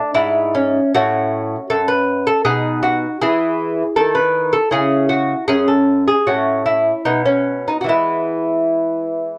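A solo lute opens on a rootless F#m, its bright, delicate fingerpicked nylon and double strings, some doubled at the octave, sitting up front in a moderate booth ambience. This serene, baroque-style classical dance in E major moves in a rubato 3/4 at roughly 68-80 BPM, ranging from F#2 to B4. The harmony passes through B, E and C#m before a brief chordless moment at 7.1 seconds resolves to E at 7.9 seconds, ending this 9.4-second cut from a longer piece.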